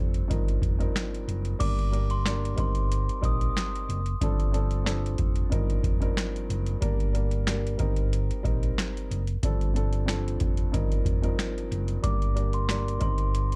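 A booming analog drum machine sets a swung boom-bap groove at 92 BPM in 4/4, its deep kick, crisp snare, metallic hi-hats and crash cymbal sitting up front with a tape-warm edge. This short cut from a longer hip-hop piece in G minor feels reflective and gritty, moving through chords such as Gm, Cm7/G, Dm7/G and F7sus4. A hollow-body short-scale electric bass, fingered and amped, holds the low end with a round, punchy tone, while a dark grand piano plays mellow, smooth, vintage-sounding accompaniment softened by filtering. A glockenspiel struck with rubber mallets carries a soft, bell-like melody from 1.6 to 3.5 seconds and returns at 12.0 seconds, its ringing high notes filtered and trailed by analog delay. The whole piece sits in a digital ambience with a dark, warm production.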